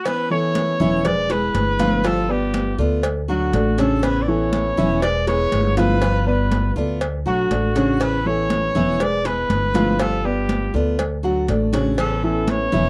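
Relaxed and danceable, this short cut from a longer Cuban son and guajira piece sets a vibrato-laden, punchy trumpet up front on the melody over a dark, boxy baby grand playing arpeggios and a picked steel-string acoustic guitar whose finger squeaks come through. High-tuned congas with a thick skin sit in the background beside a tight cowbell, while a woody pizzicato upright bass, entering at 0.8 seconds, sits up front and circles Aadd9, E7, G7 and D. The sound is dry and close, in the manner of a 1970s studio.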